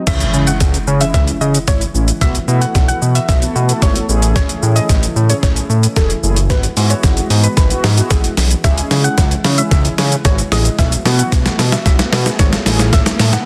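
This dense, heavily limited dance-pop excerpt sounds dry, with little reverb, and sits in C# minor at 112 BPM in a straight 4/4, tuned to A4 = 445 Hz. Up front, a gritty, pitched-down sampler-style trip hop kit drives the energetic feel with a thumpy kick, a medium-tuned snare with soft clipping, hi-hat, shaker and crash. Alongside it, a fat, detuned analog bass with a wave-folded edge, a filter sweep and sidechain pumping fills the low end. Mellow synth brass, dark and brassy with chorus, vibrato and its own sidechain pumping, carries the accompaniment, while a very quiet, smooth analog pad with a slow attack and long release holds sustained chords underneath. In the background, a gentle, round pluck plays the melody between G#4 and F#5, colored by chorus, phaser and dub echo. The chords move from C#m through B7sus4, Amaj7 and Eadd9/G# and back again across a build-up with a drum fill, while faint electronic impact and riser effects appear from 0.2 s and again from 11.0 s.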